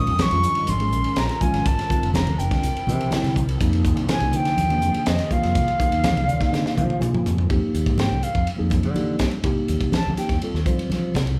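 The pure, vibrato-tinged silver flute opens this intense, funky electric jazz fusion cut at 123 BPM in F dorian over mellow tine electric piano, a hollow chorused pad in the background, bright fingered bass, a punchy, high-tuned funk kit, and thick-skinned congas, all sharing a wet studio room, with piano and drum fills leading to a flute solo at 7.5 seconds as the chords move from Bbm7 to Fadd9.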